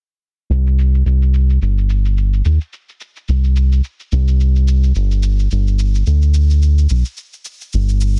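A round analog bass sits up front, its deep, mellow tone blending sawtooth and sine character with a touch of ring modulation that keeps the sound evolving. Its notes have a fast attack and hold sustained, moving between G1 and Eb2 from 0.5 to 8.2 seconds. Alongside it, a quiet electronic shaker with a tape-warm, produced quality plays through a low-pass filter, sitting far back behind the bass. The piece is a smooth sunset chillout groove in C minor at 108 BPM in 4/4, with a gentle swing on the sixteenths that gives it a relaxed, laid-back feel. This short excerpt from a longer track sits in a digital ambience and carries a dense, heavily limited modern master.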